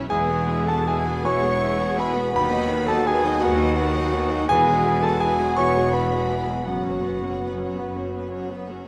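Moving and uplifting, this short cinematic excerpt in E major drifts at a rubato 55 BPM in a lilting 6/8, tuned slightly low. A bright, brilliant concert grand piano with deep bass carries the accompaniment from the first moment, joined by a rich, smooth viola section in the background. High above, a smooth, even violin section, close yet set in the background, sings the melody from 0.1 seconds with rich vibrato. Meanwhile a second, distant and expressive violin section with lush vibrato and a clear solo clarinet in classical style trace supporting second lines. A mellow, roomy French horn section holds sustained chords behind them, and the bass is shared by a focused cello section and a close double bass section whose playing shows portamento. The harmony moves from Eadd9 to B/D# and back before settling on F#sus4, all bathed in a wet scoring-stage reverb as the strings and piano carry through to 8.9 seconds.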